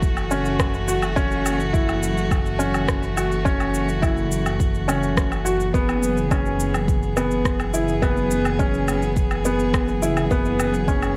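Cinematic and intimate, this 105 BPM piano-and-strings electronica clip in F# minor, cut from a longer piece, sets a mellow, felt-muted upright piano riff up front from 0.3 seconds, trailed by digital delay, over a woody, vibrato-rich string quartet holding bowed chords and a dark, rumbling detuned saw bass, both pumping against a deep, tape-warm electronic kick and a quieter layer of shaker, woodblock and rim click, all within light digital ambience as the harmony moves from F#m7 to E/F# at 5.7 seconds.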